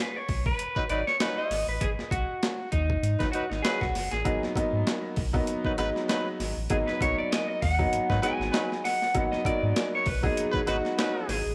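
An electric guitar at the edge of break-up leads this hypnotic funk excerpt, its dark, slightly broken-up picked tone sitting up front with a touch of spring reverb as it solos from 0.0 seconds over a single G#m9 chord in G# minor. Beneath it, a sub bass with an added octave supplies a deep, full foundation with a sine-and-triangle character, a fast attack and sustained notes. A breakbeat sampler-style kit drives the 98 BPM groove in 4/4 with a light 16th-note swing, its gritty, overdriven hi-hat, thumpy kick and medium-tuned snare sounding compressed and re-recorded in a small room. A clear, tight horn section joins at 0.8 seconds with a second line, its pop-style vibrato giving it a present edge. From 4.2 seconds a bright, worn upright piano adds woody, slightly detuned stabs that ring open and up front. The whole sits in light reverb and digital ambience, a funky cut from a longer piece.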